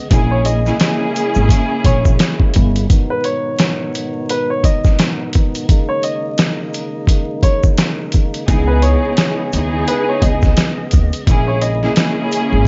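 Dark and tough, this boom-bap hip-hop excerpt in G# minor rides a swung 86 BPM groove, with a gritty, overdriven sampler-style drum kit thumping up front, a faint tube shaker, a clear upright piano melody trailing tape echo, and a fat tonewheel organ holding chords through a slow rotary speaker, while lush bowed strings and a woody pizzicato upright bass drop out for a break from 2.9 to 8.5 seconds before returning, all wrapped in small-room ambience and vinyl crackle.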